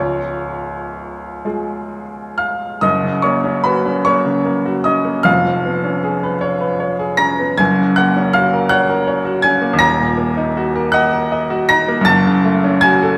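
A brilliant, up-front baby grand piano sits in the wet bloom of a recital hall, its natural tone ringing across a span from C#1 to A#6 with a reverb tail of 1.5 s. This short fragment of a longer romantic nocturne unfolds in F# major and 6/8 at a slow, rubato 39-57 BPM, its mournful, wistful mood shaped by a harmonic path from C# through F#, C#7/E# and D#m before closing on a darkening F#m near 12.1 seconds. The solo piano, tuned to A4 = 445 Hz, opens with a brief passage and moves into a new section at 2.8 seconds that carries through to the end at 13.2 seconds.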